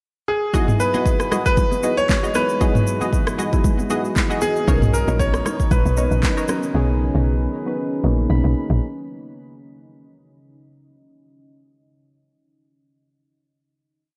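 Amapiano with a soulful, warm mood, this short piece opens with a brief pickup before settling into a swung groove over Emaj9, then shifting to Bmaj9 at 4.7 seconds. A clear, intimate concert grand piano carries a motif-based melody up front, its audible action noise and polished tone touched by tape echo. Soft, round electric-piano-like synth keys play rhythmic chords with a gentle, vintage warble and chorus, adding a short fill near the close, while punchy sawtooth chord stabs with chorus and tape echo sit in the background with short syncopated hits. A deep, moody ambient pad enters at 1.9 seconds, its detuned sawtooth layers drenched in chorus and built-in reverb and pumping against the beat. The electronic afro-pop kit drives a steady shaker, soft kick, syncopated rim clicks, handclaps and toms, with very quiet, bright, high-tuned congas interlocking beneath, and a dark, round log drum bass bursts in up front from 4.7 seconds in syncopated, decaying hits. 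The whole mix is dreamy and soaked in a church-like reverb.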